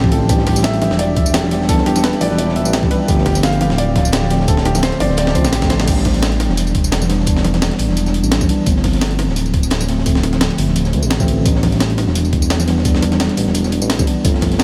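Gently swung breakbeats drive this soulful, dreamy liquid drum and bass clip: a gritty, pitched-up sampler-style kit of snare, hi-hat, tambourine and crash rides over a thumpy electronic kick, with a dark, saturated second breakbeat kit tucked in the background, very quiet soft-handed congas, and a smooth, nasal synth bass up front, while a mellow tine electric piano alternates A9sus4 and G9sus4 beneath a muted, intimate felt upright piano whose arpeggios, complete with audible action noise, stop at 5.9 s after a drum fill, the whole mix soaked in a huge ambient reverb.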